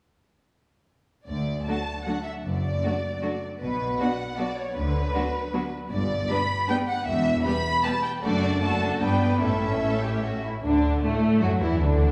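A quick classical-period movement for symphony orchestra in D major, this brief passage cut from a longer piece moves at 155 BPM in a straight 3/4 and feels spirited and graceful. The violin section carries the melody up front, warm and expressive with vibrato, while a second violin section plays a rich, focused line from a more distant position. Violas fill in the accompaniment smoothly and evenly, and the bass is shared between an intense, clear double bass section and a lush cello section sitting in the background. The harmony travels from D through B minor, G and E minor before a G to A turn lands back on D at 10.6 s, where a dark, roomy French horn section enters with sustained chords. A wet scoring-stage reverb with a small-room ambience surrounds the ensemble.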